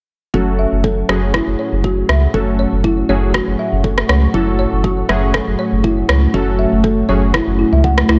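A deep electronic kick at 120 BPM in 4/4 with a 54% sixteenth-note swing opens this hypnotic, earthy afro house groove in F# minor at 0.3 seconds, alongside a round, up-front analog bass under a filter sweep, woody soft-mallet folk marimba arpeggios with low-pass filtering and dub echo, and full-bodied detuned analog key stabs with chorus, while a produced rim click joins at 1.1 seconds and a moody, sustained analog pad with a slow attack settles in at 1.6 seconds, the bass, marimba, keys and pad all pumping with sidechain under light digital reverb in this cut from a longer piece.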